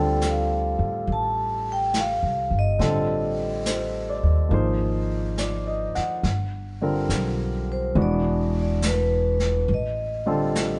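A ringing, metallic vibraphone, struck with medium mallets and with its motor off, carries the melody through this smoky, melancholic jazz ballad excerpt at 70 BPM in a swung 4/4. A deep-voiced concert grand piano and a woody, thumpy pizzicato upright bass sit up front beneath it, while a distant, roomy brush kit of snare and hi-hat with a rolled-off top joins at 0.2 s. The band plays live together in a stone room with a 1.4-second reverb and a dark, softened top end, moving through chords that open on Dm7 and settle on Am7b5, tuned slightly low to A4 = 438 Hz.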